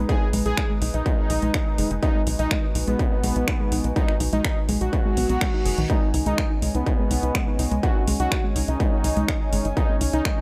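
A dry passage from a longer melodic techno track, dark and melancholic at 124 BPM in G# minor, with sidechain pumping running through the pads, pluck, bass and lead. A distorted, up-front electronic kick and a techno kit of finger snaps and metallic hi-hats play alongside a tight, nasal, driving sequencer bass, while a soft, round pluck plays arpeggios with chorus and digital delay, and a fat, detuned analog lead carries the melody with 12-bit sampler grit, vibrato and delay. Behind them sit a deep, moody analog pad holding sustained chords and a warbling, lo-fi tape-like pad with phaser and its own reverb, and a background reverse cymbal sounds from 5.1 to 5.9 seconds, leading into the change from G#m to C#5.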